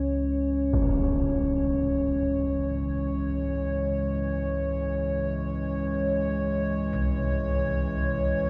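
Soaked in a cavernous cathedral reverb with a cassette-tape grain, this unsettling dark ambient drone in C# harmonic minor drifts in free time over a deep, ominous rumbling drone and a moody, nasal analog pad holding sustained C# minor chords with subtle chorus and shimmer, punctured at 0.7 seconds by a huge, bright filtered impact, before bronze gamelan-type bossed gongs enter softly in the background at 6.9 seconds with mellow, beating arpeggios in this fragment of a longer piece.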